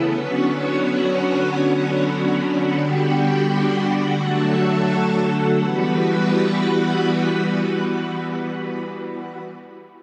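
This dream pop excerpt is haunting and hazy, drifting in free time in E dorian with a slight tuning of A4 = 441 Hz. A vintage string machine set to violins carries the whole piece, holding sustained chords with a slow attack from the opening until 9.4 seconds. Its sawtooth tone sounds bright and shimmering, thickened by ensemble chorus and placed up front in the mix. The harmony moves from Bmadd9 through Gmaj7 and D while the pace slows over the first 5.6 seconds, then settles on Emadd9 as a new section begins. A huge, wet ambient reverb with a long 4.4-second decay surrounds the chords, leaving them suspended in a misty space.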